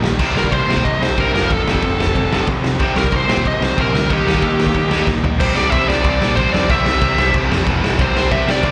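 Rowdy and energetic, this fragment of a punk rock track charges along at 185 BPM in a straight 4/4, heard live through a venue's PA with recital-hall reverb. Up front, a dark, distorted bluesy lead guitar solos from 0.4 seconds over a gritty, saturated garage drum kit and a growling, overdriven picked bass, while two bright, overdriven distorted guitars and a lo-fi garage guitar churn out riffs, the louder distorted guitar and the garage guitar sitting in the background with slapback echo. A drum fill at 5.1 seconds leads into a new section at 5.4 seconds, where the very quiet, double-tracked distorted guitar drops out.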